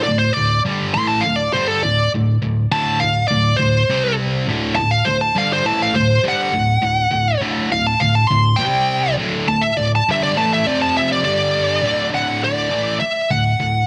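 A powerful, swaggering rock excerpt in a straight 4/4, cut from a longer piece. A smooth overdriven lead guitar carries the melody high up, playing a solo from the start until 12.1 seconds, its tone bright, picked and placed up front. Beneath it, a sludgy distorted guitar grinds out a low riff, double-tracked and heavy with overdrive, sitting just as close in the mix. The harmony moves mostly between D5 and C5 power chords before climbing through F5 and G5, and a shorter closing section begins at 12.1 seconds. Light reverb surrounds the two guitars, and the dense, heavily limited modern master gives the short passage a thick, forceful presence.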